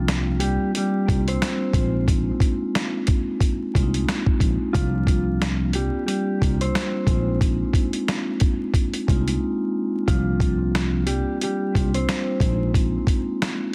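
A sampler-style boom-bap drum kit sits up front in this gritty, tough hip-hop excerpt. Its thumpy kick, medium-tuned snare and hi-hat sound compressed, pitched down and tape-warm at 90 BPM in 4/4, with a light swing on the 16ths. Beneath it, a worn, slightly out-of-tune tine electric piano carries the bass line, lightly overdriven as if through built-in speakers. A dark, smooth vibraphone played with soft mallets and the motor off adds ringing, metallic accompaniment in C minor, colored by cassette tape and filtering. A clean, fingered electric guitar takes the melody with a mellow, compressed tone, filtered and treated with delay, and drops out at 12.7 seconds. The harmony alternates between C9sus4 and Bb9sus4, with a brief break from 9.4 to 10.1 seconds, all set in digital ambience with vinyl crackle and a dense, heavily limited modern master.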